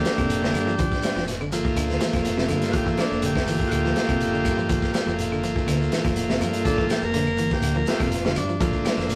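Driving and funky, this short afrobeat cut rides a single Gm7 chord while a buzzy vintage combo organ sits up front and solos throughout, over a crunchy, saturated breakbeat kit with a punchy kick and a dark, rolled-off top. A round, punchy fingered bass with an envelope filter anchors the groove, a twangy, slightly broken-up electric guitar picks arpeggios in the background through spring reverb, a grainy shekere hangs distant, and woody claves tick very quietly. The whole thing has the rough, tube-saturated feel of a rehearsal-room recording washed in wet studio reverb.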